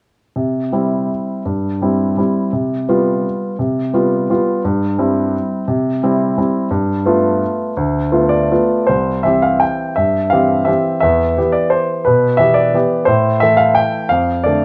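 Graceful and sparkling, this classical piano waltz in 3/4 unfolds with a flexible rubato feel, a short piece cut from a longer work. A clear baby grand piano plays solo from 0.4 to 14.6 seconds, polished and up front and spanning a broad register, moving from C and G7/C harmonies into a new section at 8.9 seconds that turns through Em and Am before settling on Dm/F. Light reverb surrounds the playing, while the recording carries the worn, warbling character of old cassette tape with a warbly, drifting pitch.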